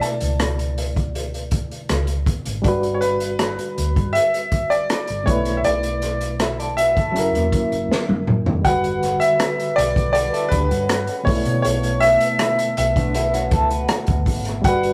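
A straight 4/4 groove at 80 BPM, driven by up-front vintage drums with a tight kick and a fill at 7.9 seconds, carries this bittersweet, silky 1970s-style soul in B minor: a brilliant concert grand piano sings the melody over a barky, lightly overdriven electric piano with fast tremolo and a round, punchy hollow-body bass, a slightly broken-up, lo-fi guitar riff joins at 6.4 seconds, and a distant French horn section adds soft-attack sustained chords from 8.6 seconds, all in a rough rehearsal-room recording with wet studio reverb.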